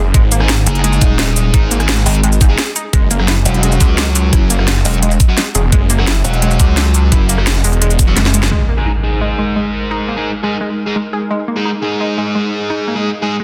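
A straight 4/4 groove at 172 BPM drives this dark, aggressive technical drum and bass excerpt, where a knocking electronic kick and an up-front kit of cracking snare, crisp filtered hats, rim click and shaker sit beneath a growling, detuned distorted saw bass and a pulsing, saturated pluck wobble bass, while a bright, round analog pluck spins chorused, delayed arpeggios and a double-tracked fuzz guitar fires distorted stabs; a drum fill closes the drop into an electronic impact at 8.5 s, and from 9.3 s a tense, granular swarming drone holds sustained chords alongside the pluck and guitar in a dense, heavily limited mix with light reverb.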